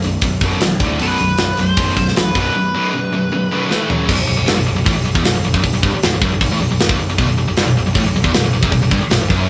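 A straight 4/4 pulse at 155 BPM drives this aggressive, epic heavy metal excerpt in B minor, with a tight, up-front drum kit of bright cymbals, tight kick, medium-tuned snare and toms pounding beneath a distorted, high-gain guitar riff joined by a quieter scooped guitar and a growly, punchy picked bass. A bright, distorted lead guitar line rings out from 1.0 to 3.9 seconds, a drum fill at 3.7 seconds leads into the second section, and a sludgy, double-tracked overdriven guitar joins in the background at 7.2 seconds. The chords move through B5, D5, A5 and F#5, captured as a rough rehearsal-room recording with light reverb and warm saturation.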